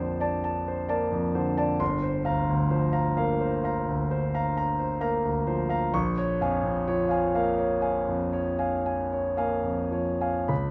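This is impressionist classical music for solo piano, serene and hazy in mood, drifting in a rubato 9/8. A concert grand carries everything alone from 0.0 to 10.7 seconds, ranging from G1 up to C#6. Its tone is warm and open, with a deep bass and a long sustain that lets the harmonies linger. The harmony glides from Bbmaj9 to Gm7 at 1.8 seconds, then settles onto A#m7 at 5.9 seconds. Close, detailed microphones keep the instrument up front, while a moderate recital hall reverb adds a soft halo around each chord in this brief passage cut from a longer piece.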